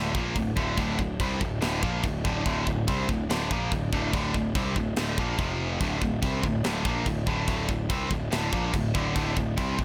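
Heavy metal with an epic, relentless mood, this short cut from a longer piece drives forward in a straight, steady 4/4. A tight, distorted electric guitar carries the riff, double-tracked and placed up front with a bright, picked attack. Beneath it, a fuzz-laden electric bass growls with punchy overdrive, its direct and amped tone sitting just as close to the listener. The acoustic drum kit enters at 0.1 seconds, polished and airy, with a tight kick, a medium-tuned snare and a bright china cymbal ringing through a big room sound. The harmony holds on D minor before shifting to F5 and back to D5 near the close, all wrapped in a small room ambience.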